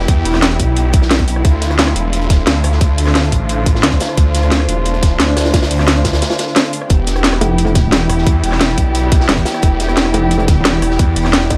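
A tight, up-front electronic kick drives a straight 4/4 groove in this dark, mechanical piece of technical drum and bass, joined by a layered drum and bass kit with a cracking snare, rim clicks and metallic hats. Beneath it sits a gritty, saturated breakbeat kit with a medium-tuned snare and rolled-off top, tucked into the background. A thick, swirling detuned saw bass with phaser and tube saturation carries the low end from the start, moving over Em7 and Dm7 chords, while muted, veiled strings played con sordino hold lush sustained chords at a distance, pumping against the kick alongside a warbling, nostalgic lo-fi pad with chorus. After a brief break from 6.2 to 6.9 seconds the harmony returns to Em7, and at 7.4 seconds an aggressive, metallic wobble bass with chorus bursts in up front. The whole excerpt sits in a light digital ambience and is cut from a longer piece.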